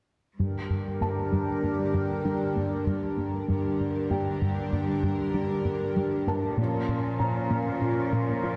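A cinematic, hybrid orchestral and electronic film score cue in G minor, cut from a longer piece, moving at 97 BPM in an unusual 5/4 metre with a straight feel and a tense, brooding mood that builds throughout. A shimmering, retro pulse-width pad sits up front with sustained chords, its chorused tone carrying a moving notch and a sub octave beneath. A very quiet, round pluck traces dark arpeggios with a gentle warble, while a punchy, funky analog bass drives a detuned, wave-folded riff underneath. A clear chamber cello section anchors the low end with smooth, intense bowed vibrato. At 1.0 s a felt-muted upright piano enters in the background, thin and intimate, its texture trailing a tape echo. The harmony rests on G minor before shifting to B-flat minor at 6.6 s, all set in a wet scoring-stage reverb heard from further back in the room.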